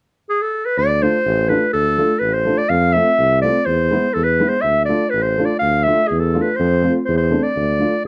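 Klezmer in a bittersweet, soulful mood, cut from a longer piece, opens with a punchy, classically styled clarinet carrying the melody up front from 0.3 seconds. A tuba with vibrato and a pop-style bass line enters at 0.8 seconds, and a dark, woody, slightly detuned upright piano adds accompaniment with long sustain from 1.0 seconds. The parts sit in moderate studio reverb with a dark, warm production over a minor-leaning progression.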